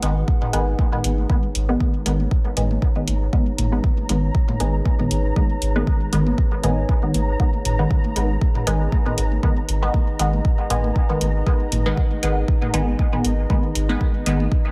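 A moody analog pad, muted phaser-coloured chord stabs with dub echo, a round sub bass and tape-warmed hi-hats open this nocturnal, cavernous dub techno excerpt at 118 BPM in G# minor, the pad, stabs and bass pumping against a deep, up-front kick that arrives at 0.3 s with echoing toms in the background, while a warbling lo-fi pluck with chorus drifts behind from 0.5 s and a flickering grainy texture joins at 3.1 s, all over a single G#m chord in light digital ambience.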